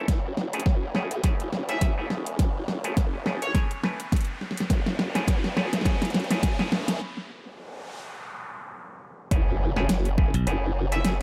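An echo-heavy mix with moderate spring reverb frames this gritty, funky glitch hop excerpt in F# minor at 104 BPM, swung on the 16ths over an F#m7 chord, where a punchy overdriven electronic kick and a pop kit of fat snare and metallic hats sit up front beside a detuned, formant-swept wobble bass. Twangy auto-wah clav stabs pump under a filter sweep while a riser and noise sweep build toward the drop at 9.3 s, where an impact lands. An edgy, tearing sync lead with lush chorus appears at 1.7 s, and a growly slap bass note cuts through at 10.3 s.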